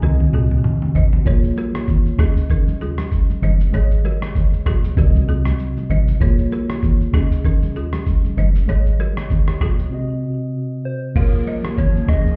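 Afrobeats with a sultry, mellow mood, cut from a longer piece, riding a swung sixteenth-note feel in 4/4. A lo-fi sampler-style drum kit sits up front with a thumpy, pitched-down, muffled character, opening with a fill and driving crash, kick, rim click, shaker and toms, while a deep, round log drum bass with an FM sheen and a noise layer thuds beneath it. A mellow tine electric piano carries the chords throughout, a woody, buzzing balafon played with hard rubber mallets repeats a close-miked riff through tape echo, and bright, damped congas join in the background at 1.6 seconds. During a break beginning at 9.9 seconds, a soft struck synth lead enters at 10.9 seconds with a warbling, vintage tone dressed in chorus and tape echo, and a cloudy granular pad with its own reverb drifts in behind at 11.6 seconds. The whole mix sounds heard through a wall in a club, muffled and reverberant.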